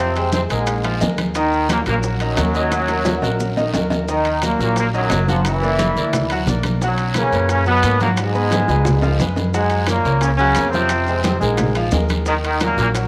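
An echo-chamber reverb with a small-room ambience surrounds this fiery, passionate salsa cut from a longer piece, moving at 176 BPM in 4/4 with a straight feel in E-flat minor, tuned slightly below standard pitch. Up front, a punchy, loose trombone section carries the melody with a light vibrato and a vintage, pop-style brassiness, while a woody, thumpy upright bass plucks dark gut strings close beside it. A brilliant, intimate grand piano accompanies with long sustain and audible action noise, moving through chords such as Ebmadd9, Gbaug7, Abm7 and Gbmaj9 before circling back to Ebm. From 0.2 s the percussion enters: band-limited, damped congas struck with hard hands, ringing metal-shell timbales and grainy, mellow maracas sit in the background alongside very quiet, round, low-tuned bongos, and a raspy guiro joins in the background at 0.3 s. Drum fills arrive at 2.7 s and again at 8.7 s, pushing the passionate momentum forward.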